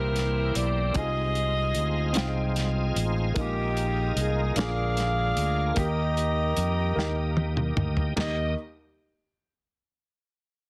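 A mellow saxophone section carries the melody up front, its soft attack, light vibrato and smooth top giving this slow gospel passage in Eb major a reverent, soulful glow. Beneath it, a fingered electric bass sits punchy and amped in the low register. A bright tonewheel organ holds sustained chords with a shouting, key-clicking tone, spun through a fast rotary speaker and chorus vibrato. A dark baby grand piano adds intimate accompaniment in the background, its short sustain and audible action noise lending a natural, close feel. The soul drum kit is dry, muffled and lo-fi, with a tight kick, medium-tuned snare, dark cymbals and toms; it enters at 0.2 seconds and plays a fill from 7.0 to 8.2 seconds. Moving at 50 BPM in 6/8, the harmony travels from C7 through Fm7/C and Bb7sus4 to Bb7 before settling on Ebmaj7, with light reverb and a dense, heavily limited modern master on this excerpt cut from a longer piece.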